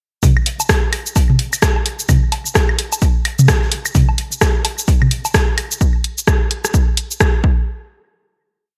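Techno at 129 BPM in 4/4, with a swung sixteenth-note feel and a cool, clinical mood, built entirely from drums and percussion. A punchy, tape-warm electronic kick drives a four-on-the-floor pulse up front. Beside it, an analog drum machine programs closed hats, rim clicks and shaker into a backbeat, touched with gated reverb. Dry electronic toms, claves and low woodblock scatter clicks and blips in cross rhythm, while a vintage acoustic kit sits in the background as a looped, edited breakbeat, its medium-tuned snare and hats rolled off on top, filtered thin, with the hats pumping. The kit and the toms drop out at 5.7 seconds, the kick carries on until 7.5 seconds, and a final hit lands from 7.7 to 8.8 seconds, all framed by bright 1980s-style digital production with light reverb and studio ambience.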